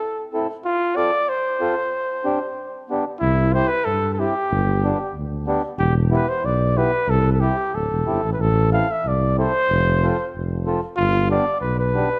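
A mellow trumpet carries the melody from the very start, played up front in a classical style with a light vibrato. This short excerpt from a longer alpine folk piece has a festive, jolly mood and moves in a straight two-beat metre. A reedy, round accordion supplies the accompaniment, entering at 0.3 seconds. At 3.2 seconds a dark tuba joins on the bass line, also up front and classically played, with a smooth top to its tone. The harmony cycles through familiar major and minor chords, with a suspended chord resolving before the tuba arrives. Light reverb and a dark, warm production shape the sound of the whole piece.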